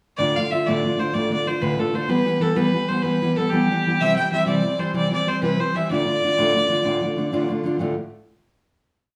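A lone bowed fiddle and a fingerpicked steel-string dreadnought guitar strike up together at 0.2 seconds in a wild, spirited Celtic folk slide in 12/8, the clear, earthy fiddle spinning a motif-based melody in sentence-like phrases over a bright, full-bodied guitar that drives with open chord shapes through Dm, Em, C and back to Dm. Both players sit up front in a wet studio reverb, and the fiddle stops at 7.5 seconds while the guitar rings on into a final chord that closes this short, complete piece.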